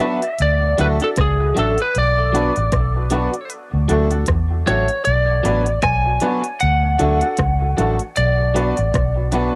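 This short roots reggae clip rides a relaxed 4/4 groove with a gentle sixteenth-note swing, its meditative, laid-back mood built on a slow alternation between D and B minor chords. A deep house drum kit of layered electronic sounds, with a deep kick, smooth hi-hats and rim clicks, comes in at 0.2 seconds, and a dark, round, foam-muted fingered electric bass sits up front from 0.4 seconds in a low register. A twangy, lightly driven lead guitar carries the melody prominently, picked and compressed with a dub echo, while a second electric guitar at the edge of break-up supplies accompaniment through a lush chorus and its own dub echo. A brilliant, woody upright piano, slightly detuned and worn, punctuates the groove with stabs. The dry, cassette-recorded sound, with tape character on the guitars, piano and drums and some lossy artefacts, gives this fragment of a longer piece a homemade intimacy.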